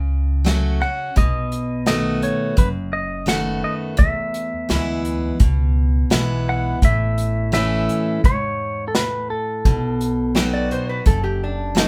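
The acoustic guitar opens with a bright, full-bodied picked accompaniment over a woody, thumpy upright bass, setting up a nostalgic, heartfelt piece of honky-tonk and classic country at 85 BPM in a straight 4/4. An airy drum kit played with bundle sticks joins at 0.5 s, with a punchy kick, a medium-tuned snare and hi-hat sitting up front in a small-room sound. At 0.8 s a clean, twangy electric guitar takes the melody, its compressed, picked tone ringing out over the changes from F#m through B7, E and A to B. Near the close, at 10.4 s, a lap resonator guitar slides in with a metallic, nasal second line played with fingerpicks. The band plays live together in a moderately ambient studio room, and this is a short cut from a longer piece.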